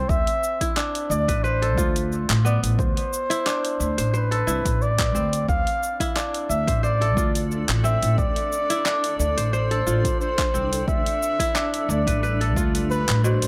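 Set in moderate spring reverb and heavy echo, this hypnotic, earthy organic downtempo excerpt in D dorian moves at 89 BPM with a light sixteenth-note swing, led by a veiled, dark bucket-muted trumpet melody with light vibrato and dub echo up front, over crisp, ringing kora arpeggios that also carry dub echo, a woody, growly pizzicato upright bass pumping against the sidechain, a punchy electronic kick and a layered deep house kit of handclaps, hi-hat and shaker, while a blurred, cloudy granular pad drifts in behind at 6.4 s as the chords pass from Amadd11 to Dm7 to G7.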